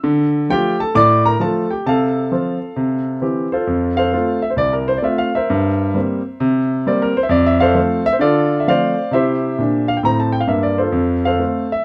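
Playful and exuberant, this short stride-piano jazz fragment swings at 132 BPM in F major, its solo grand piano smooth, vintage and up front across a broad range inside a moderate club reverb and dark production, moving through Dm, F/C and C before a second passage from 3.7 seconds that turns through C7, Dm7 and C to settle on F at 10.9 seconds.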